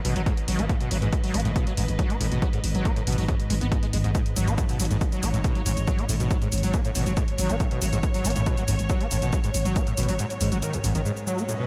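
Light reverb lends this dark, hypnotic slice of driving peak-time techno a digital sheen, with a punchy, layered electronic kick up front from 0.3 s to 9.8 s and an analog, tape-warm hi-hat and shaker ticking throughout. A squelchy, screaming sawtooth acid riff sits forward in the mix with distortion, chorus, analog delay, sidechain pumping and a filter sweep, above a growling, buzzy 808-style bass carrying tube saturation and a low-pass filter. Behind them a very quiet, detuned ambient pad drones from 0.6 s, while a bowed studio string section with vibrato and a smooth top fades in and pumps along beneath.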